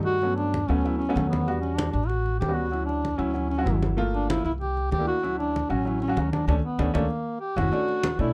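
An intimate upright piano and a pizzicato upright bass open this short excerpt of sophisticated, danceable Afro-Cuban jazz at a brisk 192 BPM in straight 4/4, centred on D major. The piano's comping has a slightly detuned, woody character with audible action noise and short sustain, while the steel-strung bass sits up front with a warm, acoustic tone. A mellow duduk soon takes the solo melody in a folk style, its vibrato present and close, and low-tuned congas add a bright, thin-skinned, vintage colour. The harmony moves through rich chords such as Gmaj9#11, A13 and Gm7 before turning to F#7 and landing on Bm9. Near the end the band hits an accent from 6.5 seconds, with a piano fill at 7.3 seconds, all captured with close, detailed microphones and light reverb.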